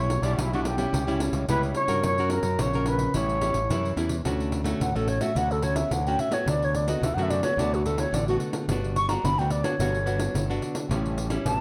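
A reedy, pure baroque flute with vibrato carries the tongued melody from 4.8 s in this lively, sunny samba and choro fragment at 108 BPM in 4/4, after a brilliant, punchy trombone opens with a forceful jazz-style solo that ends at 3.9 s. Fingerpicked classical nylon-string guitar, a growling overdriven fingered electric bass, and a jingly, close, dry pandeiro carry the piece, which settles into D major from 4.3 s. The production is dark and warm, with moderate large-studio reverb.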